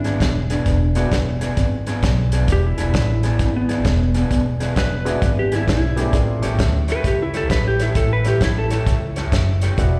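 This electric blues shuffle has a gritty, soulful mood and a swung feel, heard as a short cut from a live gig through the venue's PA with recital hall reverb, light reverb and small room ambience. A clean, dark lap steel guitar carries the melody as a slide solo, its compressed, fingered tone shaped by volume swells and given a slapback echo plus digital delay. Underneath, an electric guitar through a small old amp plays a slightly broken-up, lo-fi riff with its own slapback echo, while a woody, thumpy upright bass sits up front. A dry soul drum kit with a tight kick, medium-tuned snare, hi-hat and a rolled-off top keeps the shuffle moving. A clear, polished upright piano adds brief touches of accompaniment with slapback echo, most notably from 5.1 to 6.8 seconds, as the harmony moves from E7 to A7 at 6.1 seconds.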